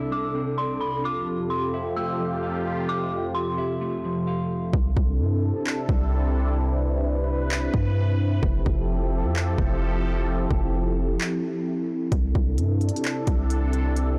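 A dry, blown-out and overdriven mix carries this dreamy, blissful cloud-rap hip hop cut in C major at 130 BPM in a half-time 4/4 feel, moving between C69 and Fmaj9. A resonant, evolving sawtooth pad with chorus and slow attack sustains throughout under a filter sweep, joined at first by an eerie, warbling FM synth bell melody and dark, fingered clean electric guitar arpeggios, both fed through chorus, low-pass filtering and digital delay. At 4.7 seconds those two parts stop as a deep, boomy 808-style bass and an up-front trap kit enter with a hard-clipped kick and handclaps, the crisp hi-hats held back until after a break from 11.2 to 12.1 seconds.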